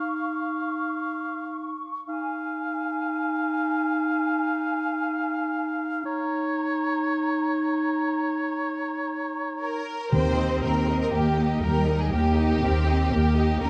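A punchy solo oboe sits up front in this triumphant, heroic film-score passage, taken from a longer piece in Eb mixolydian at 121 BPM in a straight 4/4. For its first 9.8 seconds the oboe shares a building woodwind texture with a clear, present solo clarinet holding Eb4 and a large, airy flute ensemble with a crisp attack, the oboe and flutes both with vibrato, moving through Db, Fm and Bbm chords over a sustained Eb bass note. A focused studio violin section slips in at 9.6 seconds, and at 10.1 seconds the music arrives on an Eb major chord as the full string body takes over. Lush bowed violins carry the melody from the background, with the studio violins, intense violas, smooth-topped cellos and an even, up-front double bass section holding Eb2 underneath. Timpani played with soft mallets on calf heads add a short, round, dry stroke on Eb3. The whole sits in a dark, warm production with a scoring-stage reverb.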